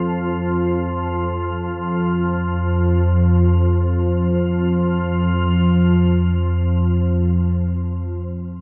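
A lone organ-like drone, sine-pure yet wave-folded, enters on a slow attack and holds from 0.0 to 8.0 seconds between F2 and F3, up front and thickened by ensemble chorus, its own reverb and a diffuse ambient delay, all set within a cavernous cathedral space with a 5.2-second decay, giving this calm but desolate, unsettling free-time ambient fragment, tuned to A4 = 442 Hz, a shift in character at 3.7 seconds before its long release fades into the hall.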